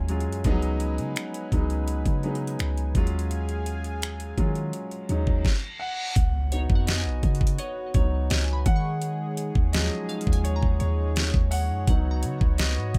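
A concert grand piano with open, long-sustaining tone, a soft-edged analog pad thickened by chorus, and a deep, boomy 808-style bass open this late-night contemporary R&B excerpt at 84 BPM, joined at 0.1 seconds by a produced drum kit of knocking kick, deep snare, metallic hats and finger snaps sitting up front. The harmony moves between Db7sus4 and Ebm11, giving the music a longing feel. At 5.4 seconds a reverse cymbal leads into an electronic impact at 6.2 seconds, where the piano steps forward to solo over the groove. From 6.5 seconds a crystalline wavetable pluck, treated with chorus and delay, glints high in the background. Light reverb gives the whole a gentle sense of space.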